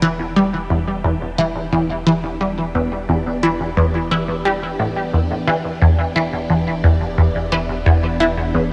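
A juicy, squelchy blip pluck riff sits up front from the start, its resonant, ring-modulated tone drenched in phaser, lush chorus, analog delay and shimmer reverb, while a swirling, vintage string machine holds sustained Em7 chords further back under ensemble chorus and phaser. Beneath them a round, deep analog bass fades in on a low E, anchoring this hypnotic, mysterious piece of ambient, sequencer-driven space music in E minor at 88 BPM in a straight 4/4. The dreamy, reverb-soaked mix sits in a moderate plate space, and this short cut from a longer piece stays in a single section throughout its 8.7 seconds.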